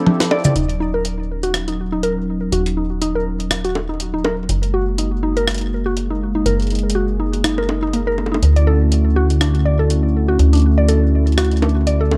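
IDM at 122 BPM in Eb phrygian, this excerpt from a longer piece feels intricate and eerie, with a 16th-note swing giving its 4/4 pulse a loose lilt. It opens with a short break and drum fill from the jungle sampler-style kit, whose pitched-up, gritty hits of snare, toms, bongos, rim click, hi-hat and shaker sit compressed and up front in a small room ambience. At 0.6 s a metallic FM bass enters low and forward, its fast, decaying notes sounding digital yet mellow. A smooth, warbling analog pad holds sustained chords with a soft attack and chorus, and a filter sweep runs across it from 0.6 s to the end. Over it, a woody, round mallet-like synth pluck spins arpeggios with chorus and delay, its ring-modulated tone carrying a noise layer. The harmony moves from Fmaj7 to Ebm7, Gbadd9 and Dmaj7, all within a dark production lightly touched by reverb.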